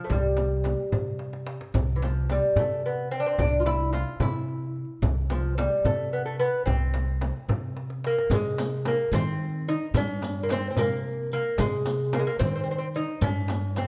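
Longing and hypnotic, this Persian modal ensemble passage in a straight 6/8 is cut from a longer piece. It is led up front by a delicate, fingerpicked lute with double gut strings, some octave-doubled, over a woody, dark, thumpy pizzicato upright bass, also up front. A small, bright, compressed and saturated frame drum and a very quiet, deep tombak struck with hard hands keep time, with drum fills at 1.2 s and 7.8 s, and a riq adds bright jingles from 8.3 s, all set in a moderate recital hall reverb.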